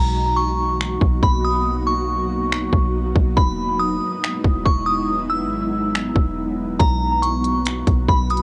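Atmospheric cloud-rap hip hop with a floating, blissful half-time feel, where a glassy, warbling FM synth bell carries the melody up front over an airy detuned pad that pumps and sits in cassette-tape haze, while a deep, boomy 808-style bass rumbles beneath and a trap drum kit of hard-clipped kick, crisp hats and finger snaps with 12-bit sampler grit enters at 0.8 seconds, all cut from a longer piece with a light reverb and a home cassette sound.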